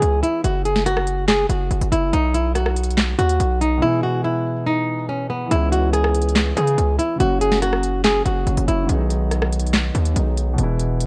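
Dark and melancholic, this half-time trap excerpt sets a boxy, fingerpicked flamenco guitar melody, with audible finger squeak, up front over a dark, mellow grand piano with long sustain that drops out after 0.5 seconds and returns at 3.8 seconds, when a break begins. A heavy, saturated 808-style bass with a noise layer and a fast attack that then decays drives the low end alongside an overdriven trap kit of sharp snare, crisp hats, handclaps and rim clicks. The guitar falls away at 8.9 seconds, and the whole sits in a small room with a worn cassette-tape warble and pitch drift.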